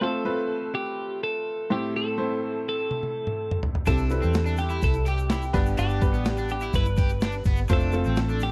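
A dry, close 1970s-style studio sound with light reverb frames this hopeful, anthemic piano-driven pop at 125 BPM in C major, where a clean, twangy twelve-string electric guitar carries the melody up front over a brilliant, woody upright piano moving through F, Am, C6 and G. A drum fill at 2.9 seconds brings in a gritty, compressed boom bap sampler-style kit with a thumpy kick. From 3.9 seconds a round, foam-muted electric bass, an overdriven semi-hollow guitar riff with tremolo, and a grainy egg shaker in the background join the groove.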